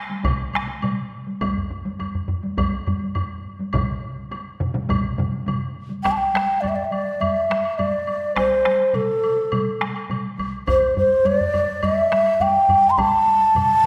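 Heard in a wet scoring-stage reverb with a 1.6-second decay, this is a short cut from a longer ceremonial Japanese taiko piece with a driving, straight 4/4 feel. Four taiko layers make up the drum ensemble: three struck with heavy sticks sound close and dry, while one played with hard sticks has a vintage, band-limited tone. A woody woodblock sits further back, as if heard across a large room, and sounds from the opening moments to near the end. The last taiko layer joins at 1.4 seconds, and the first stretch belongs to the drums and woodblock alone. At 6.0 seconds an end-blown bamboo shakuhachi enters up front with the melody, ranging from A4 to C6, its breathy, mellow, hollow straight tone and soft attack carrying the second section to the close.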